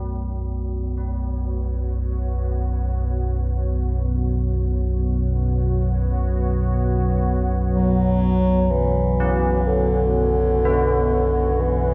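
Dark ambient drone in free time and B minor, ominous and unsettling, cut from a longer piece. A deep, rumbling drone sits up front beneath a moody, evolving ambient pad of sustained chords with chorus, while old church bells ring out clangorous, bronze arpeggios through tape echo, both pad and bells fading in across the whole 11.9 seconds. At 7.7 s a mellow, distant bass clarinet enters with a classical-style solo melody, all set in an echo-heavy mix with spring reverb and the grain of cassette tape.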